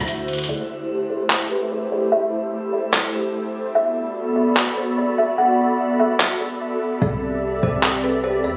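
A half-time 4/4 pulse at 147 BPM drives this hazy, spacious cloud-rap hip hop excerpt in A dorian, with an up-front, pitched-down, muffled sampler-style kit of handclaps and hi-hat, while the deep, boomy 808-style bass sounds only briefly at the start and returns at 7.0 seconds as the muted kick comes back. Over chords moving from Am7 to Bm7 to C6, a hollow, flute-like pad warbles through ensemble chorus and a low-pass filter, and a woody kalimba plucks short melodic notes through its own filter and digital delay. A filter sweep runs from 0.5 seconds to the end, and the phone-in-the-room capture adds light reverb and compression.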